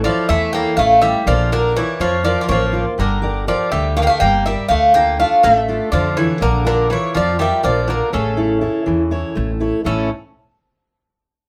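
Intense and tense, this Greek folk excerpt moves in a straight 7/8 at 245 BPM in A phrygian dominant, with a metallic, double-strung bouzouki carrying the melody over a second bouzouki line, a full-bodied fingerpicked steel-string guitar up front, and a woody, dark pizzicato upright bass, all set in moderate studio reverb as the chords pass from A through Bb, Gm and Dm before returning to A at 8.1 seconds.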